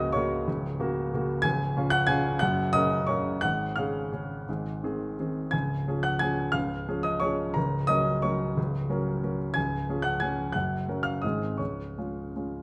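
Playful and sparkling, this short classical piano waltz excerpt in Db major sways in 3/4 with a rubato feel at roughly 158-195 BPM, as a solo baby grand with a natural, up-front tone and short sustain spans from Db1 to Ab6 across 12.6 seconds, moving through chords like Gb/Db, Db/Ab and Ab, captured by close, detailed microphones within a moderate recital hall reverb and tuned to A4 = 445 Hz.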